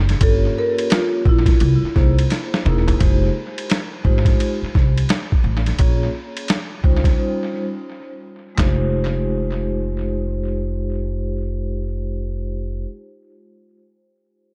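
Gritty, compressed, pitched-down boom bap drums with a thumpy kick and tape echo sit up front in this smoky, mellow jazz-hop excerpt, joined by a woody, dark pizzicato upright bass, a brief marimba melody that ends at 2.6 seconds, and a ringing vibraphone with slow motor vibrato that carries the echo-heavy accompaniment through Gm7b5, C7alt, Fm9, Bbm7 and Eb13 chords, continuing with the bass over Fm9 after the drums stop at 8.8 seconds.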